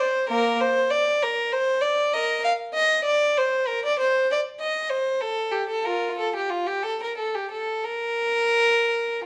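A rich, reedy solo violin with a gut-string, period-style bow sits close and up front in this flowing, radiant baroque-style suite movement in 12/8 with free rubato, its lines ringing into a stone room's reverb heard from further back in the space across a brief 9.3-second cut from a longer piece.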